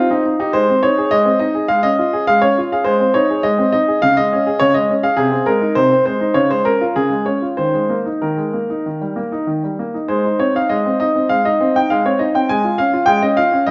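Classical-period piano sonatina in Ab major, elegant and graceful, where a clear, natural baby grand plays solo at a rubato 94-105 BPM in 4/4, its long sustain sitting up front in a wet recital hall reverb with softened highs, moving through chords like Db/Ab, Ebsus4 and Eb before a new section begins at 10.1 seconds in this passage cut from a longer piece.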